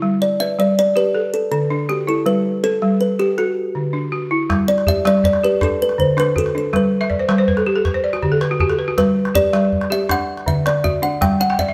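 Flowing and hypnotic, this cut from a longer piece of West African string and xylophone music moves at 107 BPM in a straight 12/8 in G major, with a dry, dark balafon up front from 0.0 s, played with hard rubber mallets, laying down buzzing arpeggios and adding fills at 7.0 s and 11.4 s. A close-miked kalimba joins at 0.2 s with a warm, hollow-box melody of short thumb plucks, while a small acoustic calabash enters at 4.5 s lower in the mix. The band plays live together in one room, with a moderate stone-room reverb around them, as the G and D chords cycle beneath.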